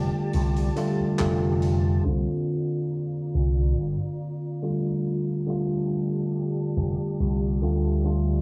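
A punchy slap bass run through an envelope filter sits up front in this short vaporwave excerpt, its bright, amped tone anchoring the low end throughout at a slow, lightly swung pace. Beside it, a clean tine electric piano heard through a combo amp carries the accompaniment, touched with subtle chorus and analog delay. Far back in the mix, a silky string machine holds sustained chords with a slow attack and long release, its ensemble chorus and vintage sampler grit lending a hazy sheen. A gated 80s kit appears only briefly between 0.3 and 1.8 seconds, just handclaps and hi-hat in an airy stone room, muffled by low-pass filtering. A filter sweep runs from 2.1 seconds to the end as the harmony moves from F69 to C9sus4 and back. The whole piece is wrapped in worn, warbling cassette tape with pitch drift and a small room ambience, giving it a nostalgic, faded mood.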